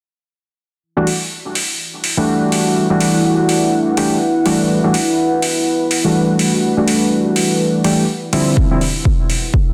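A dense, heavily limited master wrapped in a moderate plate reverb frames this moody deep house excerpt, which swings its 16ths over a sustained Dsus4. Up-front, round analog key stabs built from pulse and sawtooth waves carry chorus, a filter sweep, analog delay and sidechain pumping, joined by overdriven metallic electronic hi-hats. From 3.1 s a dark ambient pad of detuned unison sawtooth and a sine sub octave swells in slowly under a moving notch, chorus and pumping, before a punchy, overdriven electronic kick arrives at 8.6 s.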